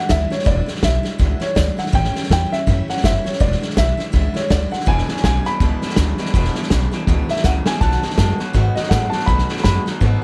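A dry, close-sounding cut from a longer piece of rollicking, retro rockabilly with a swung feel. A dark, woody upright piano carries the melody with audible action noise, over a bright, full-bodied picked steel-string acoustic guitar in the background, a thumpy gut-string upright bass played pizzicato, and an up-front vintage drum kit with a punchy kick and a pumping small-room sound. At 4.9 seconds a twangy, slightly broken-up electric guitar through a small old amp enters with a lo-fi riff, and a drum fill at 7.4 seconds leads into the move to B7.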